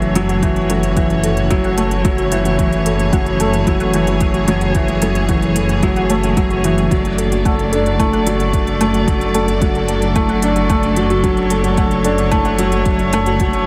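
This excerpt from a longer piece of piano and strings electronica centres on a felt-muted upright piano riff, intimate and mellow, set up front with audible action noise and a delay trailing its notes. Around it, a dark string quartet holds sustained chords with woody vibrato from a distant chamber setting, pumping against the beat alongside a deep, rumbling detuned saw bass anchored on F#1. A very quiet, round pluck traces arpeggios above, full-bodied yet gentle, with chorus and a filter sweep on its decaying notes. Crisp, overdriven electronic hi-hats run from the start, and a layered, deep electronic kick joins at 0.4 seconds, both in a small room reverb. At a steady 111 BPM in F# minor, the harmony moves from F#m7 to D/F# at 6.9 seconds, and the whole mix is soaked in a huge ambient reverb that gives it a dreamy, moving, cinematic mood.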